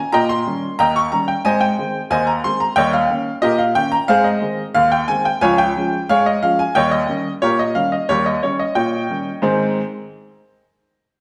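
A straight 2/4 pulse at 90 BPM drives this playful, lively ragtime excerpt in Ab major, cut from a longer piece and tuned to A4 = 441 Hz. A solo upright piano carries everything, spanning Db2 to Db6 with a woody, present tone and long sustain, sitting up front in the mix. The harmony moves between Eb7 and Ab, with a turn to Db before returning to Eb7, and the opening section gives way to a new one at 9.4 s as the chord settles on Ab. The piano stops at 9.8 s, leaving the tail of a wet stone room reverb with a 1.3 s decay. The performance was captured live in one room, giving the sound an immediate, natural feel.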